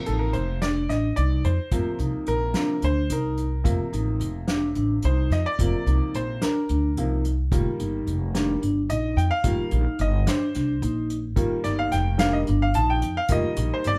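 A bright, brilliant grand piano solos up front through the whole 14 seconds of this intricate, driving progressive instrumental in 7/8 at 218 BPM (eighths) in F mixolydian, moving from Fsus4 to Eb/F over a woody, growly pizzicato upright bass, mellow ringing vibraphone arpeggios with soft mallets, and a distant, roomy acoustic drum kit played with bundle sticks, with a punchy kick and rolled-off top, all set in light reverb.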